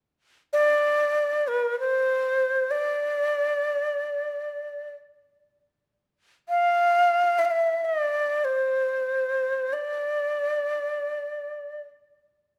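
A moderate recital-hall reverb, with a decay of about 1.6 seconds, surrounds a single ney placed up front in the sound. This is a short excerpt of Arabic music in free time, cut from a longer piece, and its mood is melancholic and full of longing. The ney enters at 0.5 seconds and carries the whole passage solo until 11.8 seconds. Its end-blown cane tone is breathy and reedy, with lifted highs that give it a bright edge. Soft attacks and vibrato shape each note, and the hall's reverb lingers briefly after the ney stops, before the recording ends at 12.6 seconds.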